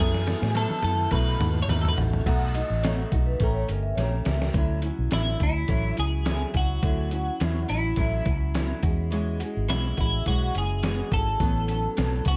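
A dark, warm production with light reverb frames this sunny, dreamy slice of indie and bedroom pop, cut from a longer piece and set to a lightly swung 4/4 groove. A twangy, compressed twelve-string electric guitar with analog chorus and tape echo carries the melody over fingerpicked flamenco guitar touched by subtle chorus and a vibrato effect, while a round, foam-muted vintage bass sits up front beside a muffled, pitched-down sampler-style drum kit, overdriven and re-recorded in a large room, which opens with a drum fill. A jingly tambourine sits in the background early on, and from 2.3 seconds a mellow, airy vibraphone played with soft mallets rings briefly as a second line, before the harmony moves to Dmaj9 at 4.5 seconds.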